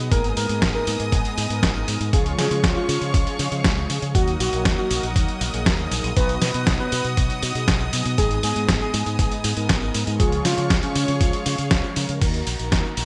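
A bittersweet, melodramatic italo disco passage, cut from a longer piece, opens with a rich symphonic string section holding bowed chords with a light vibrato, together with mellow synth brass stabs that sound round and detuned, treated with chorus and a cassette-tape haze. A fingered electric bass runs underneath through an envelope filter, punchy and direct with tube saturation adding grit. From 0.1 seconds a soft octave-layered synth lead carries the melody in a full, sub-octave tone with chorus and delay, stopping at 11.1 seconds while the rest plays on. The drums sit up front: a gritty, overdriven soul sampler-style kit of crash, hi-hat, medium-tuned snare and tambourine, with gated reverb, alongside a thumpy electronic kick that drops out at 12.8 seconds. The chords cycle through Abm, Db, Ebm and B in a straight four-beat feel, all framed by a moderate plate reverb and a bright, 1980s-style digital production.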